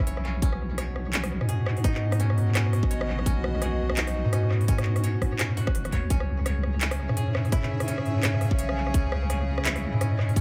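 Half-time drum and bass at 169 BPM with a swung 16th-note feel, dark and tense, cut from a longer piece and moving from B to C#m at 6.1 seconds. A rich chamber string section with a reedy, gut-string tone holds sustained chords under sidechain pumping, while a bright, woody koto played with fingerpicks spins arpeggios through dub echo. An up-front electronic kick with a tight, tape-warm punch joins at 0.4 seconds over a drum kit of crisp hats, handclaps and rim clicks, and a deep, detuned wobble bass with chorus sits prominently in a dry, echo-heavy mix.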